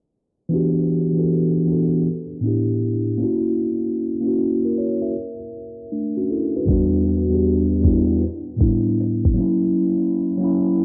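A lazy 78 BPM groove in 4/4, swung at 66% on the 16ths, sets the pace for this melancholic, reflective lo-fi hip hop excerpt in E dorian. A mellow tine electric piano carries the accompaniment from 0.5 to 10.8 seconds, sitting clean and up front as if heard through its own built-in speakers, with a cassette-tape character across its span from E2 to E5. Its chords move from Em7 to A9sus4 and F#7, pause on an unharmonised stretch at 5.1 seconds, then return to the same progression at 6.7 seconds. A dusty, sampler-style soul drum kit of hi-hat and thumpy kick enters at 6.7 seconds and stops at 9.6, sounding gritty, compressed and tape-warm, as though re-recorded in a small room. A filter sweep runs through the whole passage, and a lush hall reverb with a long tail surrounds the home-cassette sound, which is softened by a low-pass filter.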